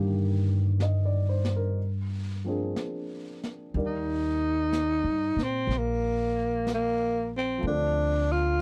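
Jazz ballad at a slow, swung 62 BPM in Eb major: an intimate, tender excerpt cut from a longer piece, where a woody, growly upright bass opens with a featured solo over an upright piano whose action noise is audible, dark, smooth brushed drums enter at 0.8 s, and a breathy, raspy tenor saxophone with vibrato and scooped notes comes in up front at 3.9 s, all captured in a dry, close 1970s-style studio sound.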